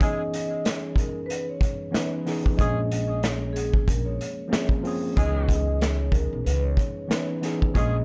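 A swung 93 BPM boom-bap groove in 4/4 opens this dark, reflective hip hop excerpt, led by an up-front vintage kit with a punchy kick, medium-tuned snare, hi-hat and rolled-off top in a small, pumping room. A worn, slightly out-of-tune tine electric piano with cassette tape character comps through Dbm9 and Bbm9. A ringing vibraphone with soft mallets and slow motor vibrato carries the melody, and a vintage saxophone section adds punchy stabs with vibrato, both treated with analog delay. A woody, thumpy pizzicato upright bass on gut strings enters at 2.6 seconds, all in a dry sound.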